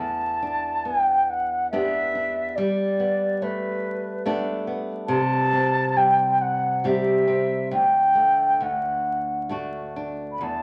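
Celtic folk slow air in 3/4, nostalgic and pastoral, moving with a rubato feel at around 64-73 BPM across this 10.6-second excerpt cut from a longer piece. A mellow wooden flute carries the melody up front, its pure, woody tone shaped by vibrato and tongued notes yet carrying a distant quality, while a fingerpicked flamenco guitar accompanies with fresh strings and audible finger squeak over Em7, Gadd9, C, Dsus4 and D. A moderate large-studio reverb and a layer of vinyl crackle lend the recording a faintly aged character.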